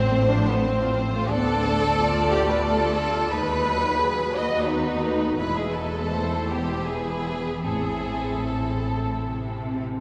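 A yearning, elegiac slow romantic movement for string orchestra in A minor opens with a rich, focused violin melody and a second violin line that sits up front with soft attack, over intimate, lightly vibrato violas, intense cellos in the background and close, bowed double basses, all in a free 3/4 rubato around 72-91 BPM, bathed in a cavernous cathedral reverb as the harmony moves through F/A and B7/D# toward a cadence on A minor at 7.6 seconds in this fragment of a longer piece.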